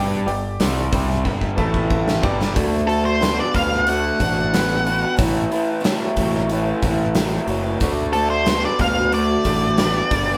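A dark, fuzzy octave lead guitar takes a solo from 2.9 seconds in this sunny, driving classic rock excerpt at 91 BPM in D major, moving over a D, A and D chord progression. Beneath it, a raw, double-tracked overdriven garage guitar riff and a growling, punchy fingered bass play throughout, while a gated 80s drum kit with a punchy kick and a medium-tuned snare sits up front and plays a fill before the solo. A jangly, metallic tack piano is heard only in the opening 2.5 seconds, a boxy picked swing-style acoustic guitar joins in the background, and the whole band sounds as if it is playing live in a reverberant stone room.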